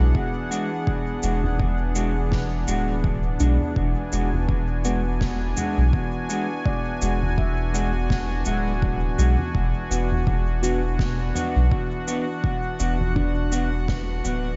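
Swung sixteenths in 4/4 give this hazy, peaceful ambient dub excerpt a gentle lilt, as a punchy, overdriven electronic kick and a soft-mallet kit of cabasa, fat snare and toms with dub echo sit over a deep, round sub bass up front, while a detuned sawtooth pad with chorus holds sustained chords, a dark, clean electric guitar adds echoing stabs, and a ringing handpan plays meditative arpeggios in the background, bathed in studio reverb until a fade-out begins at 13.4 s.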